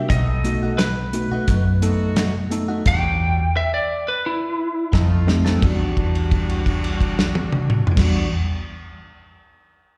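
A lightly driven, twangy lead guitar with slapback echo and plate reverb sings a melody over a worn, slightly out-of-tune tine electric piano, bright direct-recorded clean guitar stabs with phaser, a dark, round hollow-body bass, distant horn chords with vibrato and a tight soul drum kit in this smoky, soulful straight-eighth soul blues in E minor at 87 BPM, heard live through a venue's PA in a recital hall, where the lead drops out at 4.9 seconds for a drum fill before a held note arrives at 5.6 seconds over chords moving from B7 through Em9 and F7.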